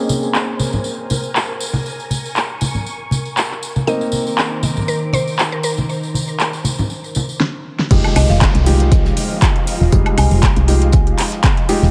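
A lightly swung 4/4 deep house groove, deep and moody, opens with an overdriven house kit of fat snare, metallic hats, handclaps, crash and woodblock beside up-front congas, a jingly tambourine, felt-muted upright piano stabs trailing dub echo and a silky, phased string machine, then a mallet-like synth pluck briefly carries the melody before a drum fill leads into the drop at 7.9 s, where a punchy electronic kick, a round FM bass, a very quiet damped 70s kit, a background downlifter and a dark hard-mallet marimba line fill out the echo-heavy, small-room mix.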